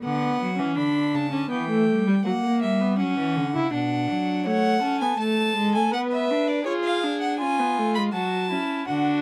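Close, detailed microphones and light reverb frame this joyful, elegant excerpt of a baroque-style fugue for string quartet in B minor at 81 BPM in 3/4, where a rich, lightly vibrato-tinged period-style violin carries the melody up front over a smooth-topped viola accompaniment and a reedy gut-string cello bass that drops out at 4.5 seconds, just as a dark, nasal, distant second violin line enters, with the cello returning at 8.9 seconds.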